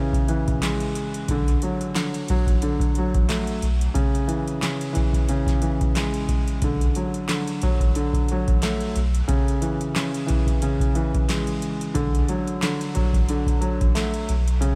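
A dark, intimate concert grand piano with audible action noise and a filtered cassette-tape colour opens this reflective yet tough, swung boom-bap hip-hop excerpt, joined almost at once by an up-front analog drum machine with a deep kick, crisp snare, handclaps and metallic hats in a short room, while a round sine sub bass enters at 0.5 seconds in the background, the whole set against vinyl crackle and light digital reverb.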